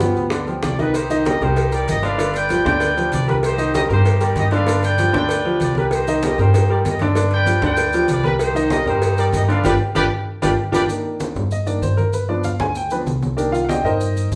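A brief, punchy trombone call opens this driving, passionate salsa excerpt, landing over clear baby grand piano, woody upright bass and a bed of hand percussion before dropping out at 0.6 seconds. The bright trumpet section then takes the melody, a tight, vintage-toned line with vibrato that carries the tune over a vamp between a dominant seventh and a minor ninth chord. Underneath, the bass plays dark, thumpy pizzicato on gut strings, while high-tuned bongos with cowbell and low-tuned, thin-skinned congas sit in the background and grainy, mellow maracas sound close and dry. A band accent and a drum fill mark the end of the horn passage, and from 10.9 seconds the up-front piano steps out for a solo as the congas, bass and maracas carry on beneath it. The whole group plays live together in one large studio, wrapped in a wet reverb.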